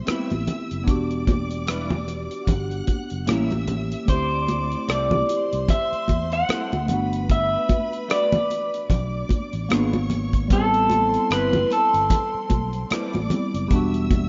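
Smooth and silky, this short cut from a longer piece is lush 1970s-style soul at a relaxed 75 BPM in A dorian, with a swung sixteenth-note feel. A dry, tight-kicked 70s drum kit sits up front with hi-hat and rim click, joined by bright, high-tuned congas played with hard hands and a punchy, amped fingered electric bass. A worn, slightly out-of-tune tine electric piano carries the accompaniment, lightly overdriven with a phaser, while a twangy guitar riff through a small old amp, thickened with ensemble chorus, sits in the background. A clear, focused studio string section adds a bowed second line with vibrato. At 4.1 seconds a lo-fi, slightly broken-up guitar enters up front with the melody under a subtle chorus, over chords moving through Am9, D9sus4, Gmaj9 and G#dim7 before returning to Am9. The rough home-demo mix has a small-room reverb and a dull, rolled-off top end.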